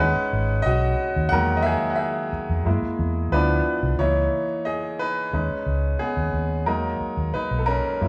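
A baby grand piano and a muted electric bass open together in this silky, smooth slice of lush 1970s-style soul, moving at 90 BPM in a straight 4/4 and tuned slightly sharp to A4 = 445 Hz. The piano carries the lead in a soloing role across the full 8.1 seconds. Its tone is clear and intimate, sitting up front with long sustain and the audible noise of its action. Underneath, the fingered bass, vintage in character and foam-muted, gives a dark, round and punchy bottom. The harmony drifts through rich colors such as B6, Emaj9#11, F#7 and Dm69, then shifts at 4.0 seconds to C#m69 before returning to B6 and Emaj9#11. The two players share one large studio, where a moderate reverb lends the live take a gentle sense of space, and the clip is cut from a longer piece.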